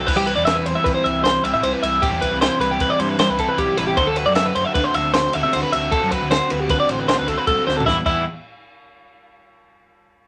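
Math rock and midwest emo in a restless, intricate 5/4 at 154 BPM in E minor, this clip from a longer piece sets clean, compressed twelve-string electric guitar arpeggios up front over a bright, double-tracked overdriven guitar riff, a fuzzy picked bass, and a dry compact cocktail kit with dark cymbals, a high-tuned snare and a punchy kick, all within a moderate studio reverb as the chords move from Cmaj7 to D13 and a drum fill at 7.7 seconds lands the music on E minor.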